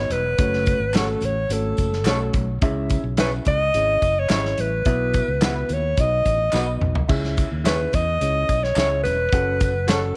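Joyful and danceable, this uptempo 1960s-style soul cut moves at 107 BPM in a straight 4/4, with a breathy, close-miked alto saxophone carrying the melody up front with vibrato over a dark, woody upright piano and a growly fingered electric bass. A punchy acoustic drum kit with dark cymbals sits forward and drops a fill at 6.5 seconds, while barely audible bright congas, background tambourine and group handclaps, and slightly broken-up, lo-fi guitar stabs entering at 0.9 seconds fill out the groove. A moderate spring reverb adds space as the harmony moves from F#m through C#m and Bsus4 to B, then back through C#m to F#m.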